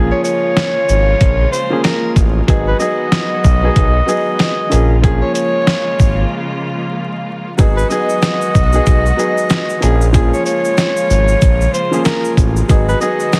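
Heavily compressed, radio-like sound with vinyl crackle and small-room ambience frames this reflective yet tough boom-bap hip-hop excerpt, where a gritty, pitched-down sampler drum kit with a thumpy kick and a smooth sawtooth synth bass sit up front beneath a dark, woody upright piano, lush bowed symphonic strings in the background and a mellow, subtoned tenor saxophone solo in jazz style, joined at 7.6 s by a grainy, bright tube shaker.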